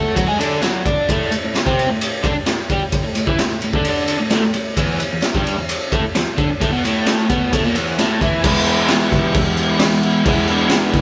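A straight 4/4 groove drives this swaggering, raw garage rock excerpt, played by a small band live in one room with light reverb. Opening the clip is a crunchy, double-tracked electric guitar, picked and overdriven with a touch of spring reverb, playing a riff over D5, A5 and E5 chords. A raw acoustic kit joins a moment later and sits up front, with a boomy kick, a medium-tuned snare, crash and ride cymbals, and a gritty, saturated sound whose top end is rolled off. A jingly, close and dry tambourine sits in the background of the mix. At 8.4 seconds the music settles onto E for a new section, and at 9.1 seconds a vintage, reedy combo organ, overdriven and tucked behind the other parts, adds a melody until the clip cuts off.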